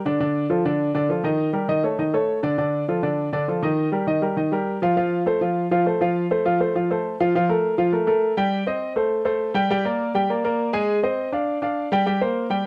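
A clear, woody upright piano sits up front in a moderate studio reverb, its vintage tone carrying a long sustain across this fast, straight-feel jazz fragment at 202 BPM in 4/4. Playing solo from 0.1 s to 12.6 s, the piano moves through sophisticated, danceable harmony in F major, with chords such as Dm, Eb7#11 and Aadd11. At 7.3 s it shifts to Bb major, passing through Am7b5, Gsus24 and Fm7 before closing on Gmadd11.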